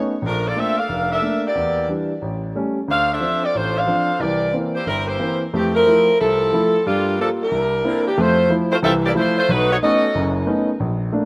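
Brassy and swinging, this short jazz excerpt in F major moves at a brisk 181 BPM in 4/4 with a gentle swing on the eighth notes. A bright saxophone section carries the melody up front, its ensemble voicing colored by vibrato and spanning a range from low to high register until it stops at 10.3 seconds. A warm grand piano supplies the accompaniment, present and polished, sitting close alongside the horns and continuing briefly after them to the end at 11.3 seconds. The harmony travels from Bbmaj7 through a minor ii–V turn toward Dm7, then settles onto Fmaj7 before a second passage opens at 8.2 seconds and closes on B9. A lush hall reverb surrounds the players, though the overall mix has the rough feel of a home demo, and the piece is cut from a longer work.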